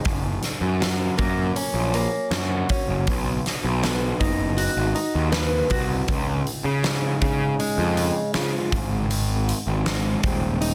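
A huge, punchy arena drum kit with a fat snare and a boxy, fingerpicked ladder-braced acoustic guitar playing arpeggios open the excerpt, joined from 0.1 seconds by a growly, overdriven fuzz bass sitting up front, in a cathartic, anthemic quiet-loud alternative rock excerpt at 80 BPM in Db major, moving through Gb, Cb, Db and Ab under studio reverb and a dense, heavily limited modern master.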